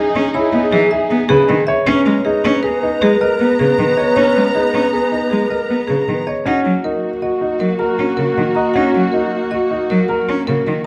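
Set in a wet recital-hall reverb with a dark, warm production, this bright, hypnotic snippet of minimalist classical pattern music moves in a straight 6/4 over Emaj7, G#madd9 and D#m. A woody, close-miked marimba with rosewood bars, struck with hard mallets, carries the melody, while a clear, intimate grand piano with audible action noise spins arpeggios and a pure alto flute with a crisp attack and vibrato traces a second line. Beneath them, a rich, smooth studio string section holds sustained chords and a focused solo cello, bowed and up front, enters at 0.2 seconds as accompaniment.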